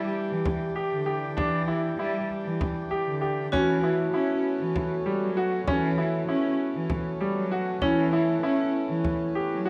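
Pensive and hypnotic, this contemporary chamber excerpt in 7/8 sets a brilliant, up-front grand piano's arpeggios against a ringing, metallic vibraphone second line played with hard mallets and motor vibrato, while a reedy, breathing pedal harmonium sustains chords over a smooth, bowed cello bass with vibrato, a deep, close and dry frame drum struck with hard hands joins at 0.5 s, the harmony moves from Em7 to Aadd9/E at 3.5 s, and a recital hall reverb surrounds a dark production.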